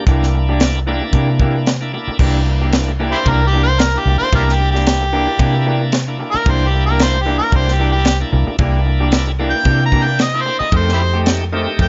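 A straight-eighth 4/4 groove at 113 BPM with a light 16th-note swing drives this soulful, swaggering soul blues excerpt in C mixolydian, where a tight funk kit with a high-tuned snare and dry, polished kick sits up front beside a dark, round, foam-muted fingered bass. A slightly broken-up, lo-fi electric guitar adds compressed picked stabs through tape echo, and a bright, shouting tonewheel organ with key click and slow rotary speaker fills in the accompaniment over C9 moving to F9 at 10.7 seconds, while a gritty, overdriven amplified harmonica enters up front at 3.1 seconds with a punchy solo full of tongue slaps, all in a lightly reverberant, mellow-topped mix.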